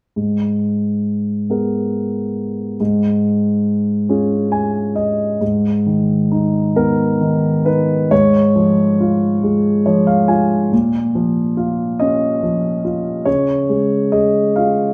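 Classical, lyrical solo piano in a reflective, wistful mood: this brief cut from a longer piece moves in a slow, rubato 6/8 at 43-47 BPM in G# dorian, with a dark, mellow baby grand placed up front and ringing with long sustain from G#2 to G#5, adding fills at 4.1 and 9.4 seconds as harmonies such as G#madd9, C#/G# and A#m pass through a wet recital-hall reverb.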